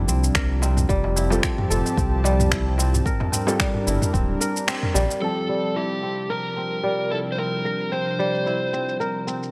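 Organic downtempo in C mixolydian at 111 BPM, this excerpt has a peaceful feel with a gentle 16th-note swing. A detuned sawtooth pad with chorus and sidechain pumping holds sustained chords under crisp, ringing kora arpeggios that pass through a low-pass filter and delay. A smooth, up-front synth bass with tube saturation anchors the first 5.1 seconds, while a layered, tape-toned deep house kit of finger snaps, shaker and toms is soon joined by an electronic kick and a soft-handed darbuka in the background. A felt-muted upright piano, intimate and mellow with audible action noise, enters at 1.3 seconds. After a band accent and a brief kick dropout, an overdriven slide guitar takes the melody from 5.2 seconds as filter sweeps move across the drums, kora and pad. Chords shift from C7sus4 through Fadd9 and Gmadd9 back to C7sus4, all set in light reverb and digital ambience.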